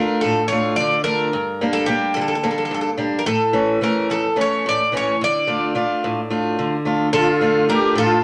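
Greek folk played by a small bouzouki band, this short cut from a longer piece moves in an uneven 7/8 with a straight, bittersweet and brooding feel. The bouzouki carries the melody up front, its metallic double strings and some octave-doubled courses giving each picked note a warm, metallic edge. Beside it, an old ladder-braced acoustic guitar supplies picked accompaniment with a warm, boxy tone, also set up front, spanning from its low bass strings into the middle register. At 7.1 seconds a musette accordion joins with a reedy, shimmering second line in a narrow range, its airy musette tuning adding a trembling colour. The harmony turns from D minor through G minor and A major before settling back on D minor, all wrapped in a wet but fairly short studio reverb.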